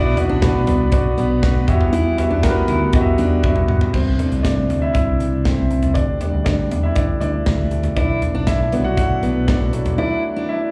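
Bittersweet and dramatic, this short cut from a longer piano-driven pop piece moves at a steady, straight 4/4 pulse with a live-gig feel, as if heard through a club's PA with small-room ambience around it. A grand piano sits up front, its open tone and long sustain carrying the accompaniment before taking a solo from 3.9 seconds to the end, touched by a slapback echo. Beneath it, a dark, round, foam-muted electric bass gives punchy, amped low notes, while an acoustic drum kit with a tight kick and medium-tuned snare drives the groove, playing a fill just before the piano solo begins. A jumbo steel-string acoustic guitar adds a full-bodied, fingerpicked riff with slapback echo, dropping out after 3.5 seconds and returning at 8.0. Very quiet in the background, a lightly overdriven tonewheel organ holds sustained chords with key click, third-harmonic percussion and a slow rotary speaker, as the harmony shifts from Bm through Emadd9, C6 and Dsus4 to Bm7.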